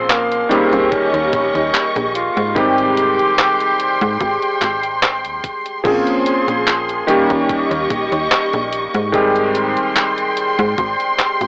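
A breathy, distant tenor saxophone leads this faded, nostalgic vaporwave fragment at 73 BPM in Ab major, sighing a jazz-style melody through cassette tape and tape echo until 5.0 s, over a clear, clangy electric grand piano with analog chorus and delay, lush bowed symphonic strings, a snappy FM bass with a metallic attack and tube saturation, an up-front detuned 8-bit drum machine of crash, handclaps and hi-hat, and a thumpy electronic kick, all heard through a home-cassette, AM-radio haze as the chords cycle from Bbm9 through Eb7 to Abmaj7.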